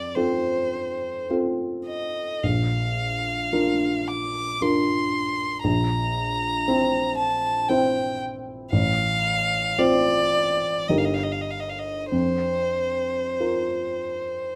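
Classical romantic duo in triple metre, tender and warm, unfolding with a gently rubato pulse across this 14.6-second excerpt from a longer piece. A single bowed violin carries the melody up front, its tone clear and close with an even vibrato and a smooth line. Beneath it the grand piano plays a dark, mellow accompaniment with a vintage character and short sustain, both instruments set in a moderate large-studio reverb.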